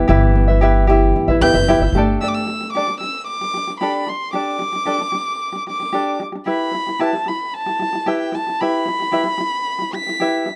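This short section of a longer piece has a dry, close sound, like a 1970s studio, with a small room's reverb. It is a heartfelt, easy-going pop tune in G major at 112 BPM in a straight 4/4, moving from Em to Gsus2 and back to Em. A fingerpicked tenor ukulele plays light accompaniment up front throughout. At the start, a full-bodied nylon-string guitar with fresh strings plays fingerpicked arpeggios until 2.8 seconds, while a woody, thumpy pizzicato upright bass on gut strings sits up front until 2.1 seconds. A single bowed violin enters at 1.4 seconds to carry the melody high in its range, played sul tasto with a soft attack, light vibrato and a smooth, intimate top.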